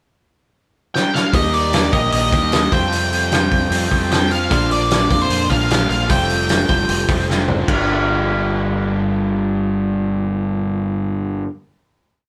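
A straight four-four groove opens with a drum fill at 0.9 seconds, and the loose indie drum kit settles into a big rock feel, up front and saturated, with a fat snare, punchy kick, gritty tone and shadowy cymbals under a rolled-off top. This short, complete indie rock piece has a cool, moody air and moves through a pickup bar and a pre-chorus to a final Gm7 chord that rings from 7.7 seconds. In the background, a bright, crunchy overdriven guitar and a clean, compressed twelve-string electric guitar both play picked riffs in ringing chords. The fuzz-toned fingered bass, overdriven and warm, sits locked to the kick drum. On top, an octave-fuzz lead guitar, distorted and up front, picks a free melody that never settles into a recurring motif. The band sounds as if it is playing live together in one studio room with moderate ambience.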